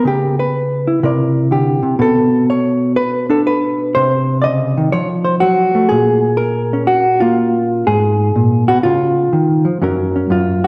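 Playful and relaxed, this short solo jazz fragment features a single hollow-body electric guitar, played fingered with a swung eighth-note feel in 4/4. The guitar's tone is dark and clean, compressed and placed up front, and it covers a range from low in the bass register up into the upper middle. The harmony moves through a winding chain of jazz chords, from C#m7b5 through Bm7, Cm, F and A#m7, before G#m and C#add9 settle onto F#maj7 at 9.8 seconds. The guitar sits in a recital hall whose reverb gives each phrase a lingering, spacious tail. The passage is lifted from a longer piece and ends at 10.7 seconds.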